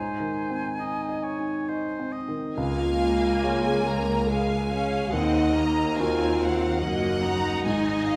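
Heard through a wet scoring-stage reverb with a 1.6-second decay, this short cut from a longer cinematic film score feels tender and uplifting, moving in a rubato 3/4 at around 66-73 BPM in Db major. It opens with a brief woodwind moment. An airy, bright silver flute, a clear, close-miked oboe and a dark clarinet in the background share second lines over an intimate grand piano with deep bass, long sustain and audible action noise, which carries the accompaniment throughout. At 2.6 seconds the strings and brass arrive: a lush symphonic violin section takes the melody with focused vibrato, joined by a studio violin section on a second line, while a smooth, even viola section fills in the accompaniment. The mellow French horn section, the most prominent part, holds sustained chords in classical style, and a rich cello section sits in the background beside an expressive double bass section marked by portamento. 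The harmony moves from Ab through Db to Eb minor before the passage is cut at 8.2 seconds.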